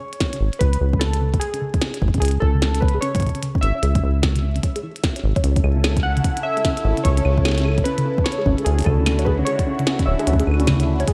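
IDM excerpt at 149 BPM in C# phrygian with a swung, cerebral and eerie feel, where warbling lo-fi synth keys carry a nostalgic melody with tape echo over dusty, detuned pluck arpeggios under a filter sweep, clicky glitchy drums with a tiny snare and claves, a soft electronic kick, and a rubbery, saturated acid bass up front, joined at 5.6 seconds by a swirling phased analog pad with sidechain pumping as the chords move from C#m to A to Dadd9.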